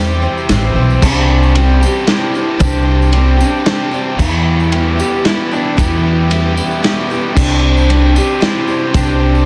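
This short cut from a longer folk rock and heartland rock piece opens with the guitars, accordion and bass already sounding together: a dark, slightly broken-up electric slide guitar carrying the melody over a shimmering, octave-doubled twelve-string acoustic guitar picking out the accompaniment. The mood is nostalgic and jangly, moving in a straight 3/4 at 114 BPM through C/E, Csus2 and Em. A bright, overdriven and double-tracked electric guitar plays a riff beneath, while a woody pizzicato upright bass sits up front, and a reedy, airy accordion holds very quiet sustained chords. A jingly, band-limited tambourine stays in the background, and a muffled, lo-fi vintage drum kit with dark cymbals, a tight kick and a medium-tuned snare comes in at 0.5 seconds. The sound carries a light small-room reverb and a dense, heavily limited modern master.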